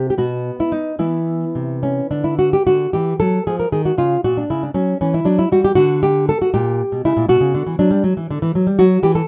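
Light reverb gives this short recording a gentle sense of space, and the solo nylon-string guitar sits up front with an acoustic, classical tone and audible finger squeak. It is a grave, introspective baroque-style dance in B minor and 6/8, moving at roughly 70-81 BPM counted in dotted quarters, with a freely rubato feel. The thumb-plucked guitar, warm in body, plays alone for the full 9.3 seconds, ranging from A#2 to A#4. The opening phrase returns at 2.7 seconds, passing through Dadd9, C# and F#5 before darker harmonies such as A#dim7 and a rootless Bm give it a brooding colour. Cut from a longer piece, it ends on a rootless D#dim.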